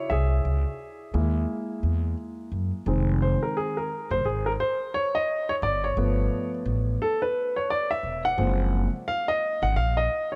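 A polished, up-front grand piano opens this mellow, cool hip hop fragment at 87 BPM with swung sixteenths, voicing a rootless C7b13 before moving through Fm7 and G9 to Gbmaj9#11 at 8.4 seconds, while a woody, thumpy pizzicato upright bass on gut strings sits just as close beneath it, all bathed in a moderate plate reverb and a dark, warm production.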